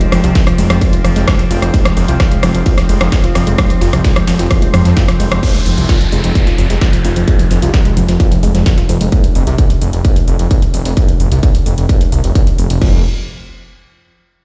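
A distorted kick drives this dark, intense peak-time techno cut at 130 BPM in F minor, up front with a thick, beating detuned saw bass whose tube saturation sits under sidechain pumping, while metallic hats, ride, crash and rim clicks from a techno kit mix with a gritty, fat-snared sampler-style kit in the background. A woody, warbling wave-folded pluck carries the riff through chorus and dub echo, and a resonant drone with moving overtones hangs behind it until 5.5 seconds. An electronic downlifter falls in from 5.4 to 9.1 seconds, all inside a stone-room reverb like a big sound system in a bare space.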